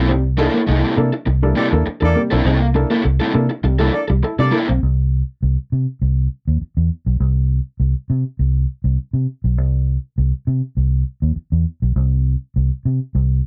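Playful, energetic funk at 101 BPM in C mixolydian opens on a C13 groove with an overdriven, picked garage guitar, a dark, clean fingered guitar riff, stabs from a worn, woody, slightly detuned upright piano and a round, punchy foam-muted bass up front, joined at 1.6 s by a tight horn section with light vibrato, a smooth top and octave doubling, before the bass carries on alone from 4.8 s to 13.4 s in this dry, close 1970s-style studio recording.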